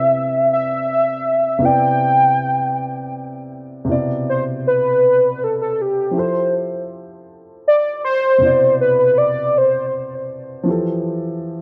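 This R&B excerpt in 6/8 moves at a slow 53 BPM in C major, tuned slightly sharp to A4 = 443 Hz, with an intimate, warm mood as the harmony alternates between Cmaj9 and Fmaj9. A velvety, detuned sawtooth synth lead with vibrato, chorus and tape echo carries the melody up front and turns into a soft solo from 3.9 seconds before stopping at 9.9 seconds. A dark, mellow, somewhat boxy grand piano accompanies it until 11.6 seconds, and the echo-heavy mix is bathed in wet spring reverb.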